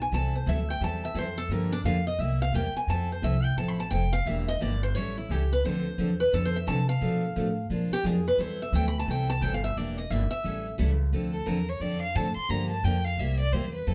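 Swinging and virtuosic, this acoustic jazz manouche piece moves at a brisk 175 BPM in A minor. A bright, boxy picked steel-string guitar takes the lead solo with audible finger squeak until 10.8 seconds, backed by a woody, thumpy pizzicato upright bass on gut strings and a second picked steel-string guitar with fresh strings playing chords that move through Am7, Dm9, Em7b5 and A7. At 11.3 seconds an expressive bowed violin, captured up close, takes over the solo with vibrato, soft attacks and portamento, and the whole band plays live in one room with a wet studio reverb.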